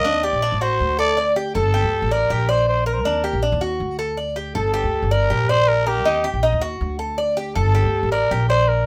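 A growling, raspy trumpet carries a sultry solo melody in G harmonic minor over metallic, picked Cuban tres arpeggios and a woody, thumpy pizzicato upright bass, all up front in a moderate studio room, giving this danceable Cuban son and guajira excerpt at 160 BPM its repeating cycle of Ebmaj7, D, Gsus2 and Bb6 across 8.9 seconds.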